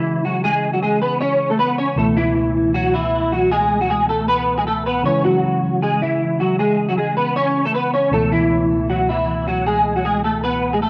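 A half-time 4/4 pulse at 156 BPM drives this brooding, hard-hitting hip hop excerpt in C# minor, where a dark, clean, fingered semi-hollow electric guitar sits up front carrying the melody through ensemble chorus and cassette tape coloring, while a worn, slightly out-of-tune tine electric piano, played through a combo amp with subtle chorus and the same tape treatment, accompanies on a C#m chord, both parts running the full 10.9 seconds inside a moderate spring reverb on a home cassette recording.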